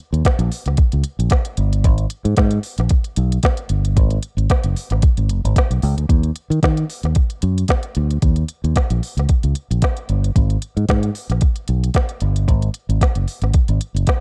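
An up-front electronic drum kit with a soft kick, woody snare and crisp hi-hats drives this glamorous, danceable disco excerpt at 113 BPM in a straight 4/4. A fingered electric bass, direct and amped and also up front, plays alongside from 0.1 seconds, ranging from F#1 to D#3, with the arrangement shifting into a new section at 6.1 seconds. The dark, warm production keeps reverb to a minimum, giving the groove a dry, close-up feel.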